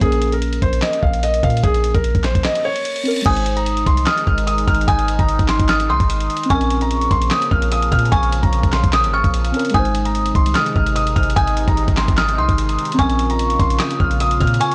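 Dry, cassette-tinged and gritty, this dark, hard-hitting half-time trap beat at 148 BPM pairs a soft, felt-muted upright piano melody, with audible action noise, against dim synth keys under chorus and phaser, a boomy sine-based 808-style bass, and a compressed, up-front sampler-style drum kit with a thumpy kick, handclaps and 12-bit crunch, while a brief electronic reverse cymbal at 2.6 seconds ushers in an eerie, inharmonic FM bell line from 3.3 seconds and an evolving, resonant sawtooth pad from 3.6 seconds.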